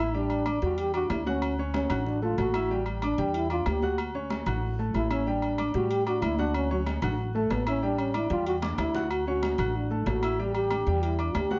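A breathy, dark trombone opens this joyful, sunny salsa excerpt at 187 BPM in D major, carrying a close-miked, whispered solo with soft attacks and scooped notes in a jazz style, set in plate reverb. Beneath it from the start, a concert grand piano supplies intimate accompaniment with deep bass, long sustain and audible action noise, while a woody, growly pizzicato upright bass sits up front with a thumpy tone. Ringing, high-tuned congas played with soft hands enter at 0.1 seconds, sounding distant in a large room behind the band, and close, dry agogo bells and metal-shelled timbales join at 0.3 seconds. The harmony alternates steadily between A7sus4 and Dmaj7 in a straight 4/4, and a brief drum fill at 8.6 seconds adds a lift near the end. The whole mix sits in a moderate studio reverb with a soft, rounded top end that lends it a sunny glow.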